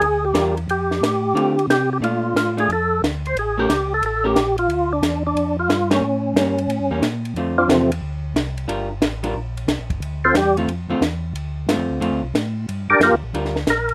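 A fat, percussive tonewheel organ carries the bluesy, late-night melody over a round, mellow organ bass line, a dark picked hollow-body guitar comping from 0.3 seconds, and a smooth cocktail drum kit with punchy kick and high-tuned snare, all swinging in this soul jazz organ trio excerpt, with a band accent at 5.9 seconds before the organ solo begins at 7.4 seconds in a dry, rough home demo mix.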